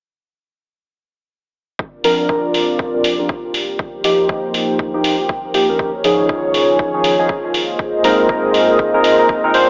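Soaked in lush hall reverb with a thin, telephone-like tone, this dreamy cut from a longer deep house piece feels hypnotic and late-night at 120 BPM in C minor, with swing on the 16ths. From 1.8 s a deep, detuned analog pad with gritty 12-bit sampler texture and sidechain pumping holds moody sustained chords through C9sus4, F9sus4, Eb9sus4 and Bb9sus4, over a punchy electronic kick, joined at 2.0 s by an electronic hi-hat, both tape-warmed and re-recorded in a small room. Up front, a glossy, chorused retro polysynth plays stabs through tape echo and sidechain pumping, with a filter sweep running across its part.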